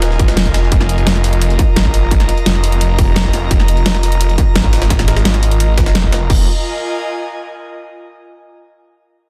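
This short, dense, heavily limited clip of dark technical drum and bass, cut from a longer piece, sits in light digital ambience at 172 BPM in F minor, with a tense mood over a straight 4/4 pulse. A snarling, growling detuned saw bass sits up front with distortion and tube saturation, alongside a distorted electronic kick that enters at 0.2 seconds, a dubstep kit with a huge snare and bright hats in studio reverb, and a very quiet, gritty, pitched-up jungle-style kit with a high-tuned snare. An airy, breathy pad with chorus and sidechain pumping carries on alone after the rhythm parts drop out near 6.5 seconds, holding the final moments through 7.7 seconds.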